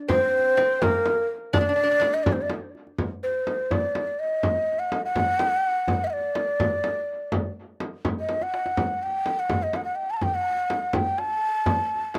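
A breathy, mellow ney carries the melody up front from the first moment to 12.2 s, its end-blown reed-cane tone straight and crisply attacked, with rolled-off highs and a slapback echo. This passionate Persian modal ensemble piece moves at 83 BPM in a straight 6/8, set in D dastgah homayun with tuning at A4 = 436 Hz, and it is cut from a longer work. A bright, delicate fingerpicked lute with doubled nylon strings, some in octaves, adds a second line beneath the ney, also touched by slapback echo, before stopping at 2.1 s. A deep, large frame drum sits up front, its compressed, saturated tone struck with soft hands, while a tight tombak, also played with soft hands, stays in the background with a small-room warmth. After the opening passage gives way to a longer second section at 3.0 s, a drum fill marks 8.3 s, and the outdoor recording has little reverb and a dry presence, free of room sound.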